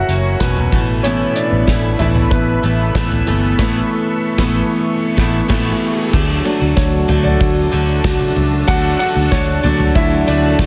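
Piano-driven pop in D major at 94 BPM, this anthemic, uplifting excerpt moves in a straight 4/4 feel. A woody upright piano sits up front, its audible action noise and long sustain giving the accompaniment an intimate character, while a bright picked steel-string acoustic guitar plays a riff alongside it. A dark, foam-muted fingered electric bass supplies a round, punchy low end, and an unplugged drum kit played with bundle sticks enters at 0.1 seconds, with punchy kick, medium-tuned snare carrying soft clipping, hi-hat, ride, crash and toms. An evolving, airy sawtooth pad with chorus holds sustained chords in the background, and the band lands an accent from 3.6 to 6.1 seconds as a very quiet electronic riser leads into the second section. At 6.1 seconds, as the harmony settles on D, a dark, smooth-topped French horn section adds a tight second line in the background, all within light small-room ambience and a dense, heavily limited modern master.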